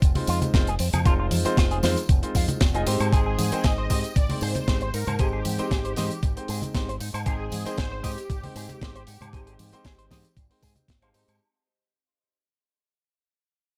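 A sensual, groovy nu-disco drop opens on a thumpy, up-front electronic kick, a tight funk kit with a high-tuned snare, hi-hat and woodblock, warm tambourine and congas in the background, and a punchy fingered bass through an envelope filter, all over Fm7 moving to Abmaj7. A clear, intimate grand piano with audible action noise pumps against the kick under tape echo, while a twangy, clean picked guitar riff with its own envelope filter shimmers through analog chorus. At 3.1 seconds a thick, detuned sawtooth unison lead with vibrato and digital delay joins as the passage begins to fade out.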